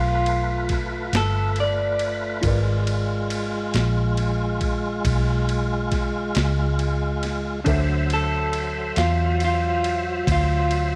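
Slow blues in 12/8 at 46 BPM, soulful and laid-back, tuned slightly low to A4 = 439 Hz and heard as a short cut from a longer piece. An electric guitar played through a small old amp carries the melody up front as a clean solo, its dark, picked tone slightly broken-up and shimmering with tremolo. A round, punchy muted bass sits just as far forward, while a tonewheel organ holds full, lightly overdriven chords through a slow rotary speaker and chorus vibrato. A woody, mellow upright piano with a slightly detuned edge fills in the accompaniment. A gritty, pitched-down, sampler-style drum kit enters at 0.3 s with a thumpy kick, high-tuned snare and ride cymbal, all given a compressed, tape-colored feel. The harmony moves from G9 to G#dim7 at 2.4 s and settles on D9 at 7.7 s, all set in light digital ambience.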